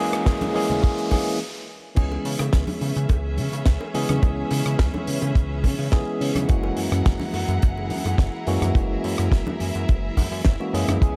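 Nu-disco at 106 BPM, this groovy, sleek excerpt opens with a brief build-up where a bright tine electric piano, pumping and trailed by analog delay, sits up front over rich, bowed strings carrying vintage 12-bit sampler grit, an electronic riser, a damped 70s kit with a fat snare, soft-handed bongos and congas ringing in the background, and a tight, dry kick. After the riser stops at 1.4 s, a glossy, chorused pulse-wave synth bass arrives with the drop at 2.0 s, evolving through a moving notch as the harmony shifts from C#m7 back to F#9 at 6.5 s, all inside a small room.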